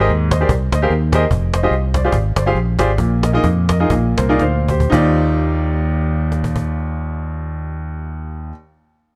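Soulful and uplifting, this short excerpt from a longer uptempo gospel piece sits in Eb major with a swung 4/4 feel, its tempo ranging from 111 to 148 BPM and easing back between 1.3 and 4.9 seconds. A clear baby grand piano carries the accompaniment up front, intimate and natural, with audible action noise and long sustain as it moves through rich chords such as Abmaj9, Fmadd9 and Bb7sus4 before landing on Ebmaj9 at 4.9 seconds. Beneath it, a fingered electric bass sounds round and dark, direct and amped, holding the low end close to the listener. A snappy cajon with snares, close and dry, keeps time until 6.7 seconds and adds a drum fill just before the second section opens. The production is dark and warm with light reverb, giving the ensemble a warm glow.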